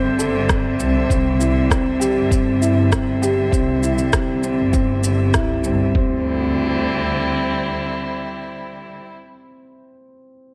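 Moving and melancholic, this short cut from a longer piano and strings electronica piece moves at 99 BPM in a straight 4/4. A dark, woody upright piano carries the riff from the start, its slightly detuned, boxy tone trailed by delay and lasting until 10.5 seconds. Alongside it, a string quartet holds sustained chords with focused vibrato and a smooth top, while a bowed double bass section supplies an expressive, close low line, both breathing with sidechain pumping. An electronic kick with a muffled thump and a layered, tape-tinged shaker and rim click drive the opening drop, the kick entering at 0.5 seconds and falling away by about 6 seconds. The harmony moves from Am to Cadd9, then shifts to D9sus4 at 6.0 seconds as the music opens into a new section, all set in light reverb.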